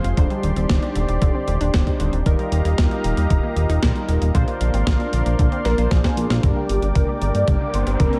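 Italo disco at 115 BPM in a straight 4/4, this short cut from a longer piece carries a nostalgic, melodramatic mood. A fat, saturated sawtooth bass sits up front with the thumpy, tape-tinged electronic kick, which joins at 0.2 seconds, while a clean 12-bit drum machine supplies hi-hat, a medium-tuned snare and toms bathed in gated reverb. Above them, a smooth, warbling analog pad holds sustained chords with chorus, a round, detuned analog pluck spins arpeggios in the background with sampler grit and digital delay, and a glossy, dark chorused polysynth adds stabs through its own delay. The harmony moves through Cmadd9/Eb, Ebadd9 and Bbadd9 before settling on Gm as the second section opens at 6.4 seconds, following a drum fill that starts at 5.7 seconds. A bold, bright unison lead enters at 5.7 seconds with vibrato and ensemble chorus, a filter sweep colours the lead in the closing stretch, and a background riser rises in at 7.1 seconds, all set in a digital ambience.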